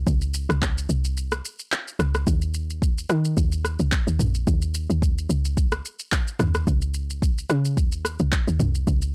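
Amapiano with a late-night, hypnotic pull, built on a woody, punchy log drum bass with a fast attack and mellow decay, sitting up front beside a layered electronic deep house kit of handclaps, rim click, shaker, toms and a kick with real depth, the kit carrying a tape-warm character. A brief break arrives between 1.2 and 2.3 seconds in this short excerpt cut from a longer piece. The dry, blown-out recording is heavily overdriven, lending the mix a rough, pushed edge.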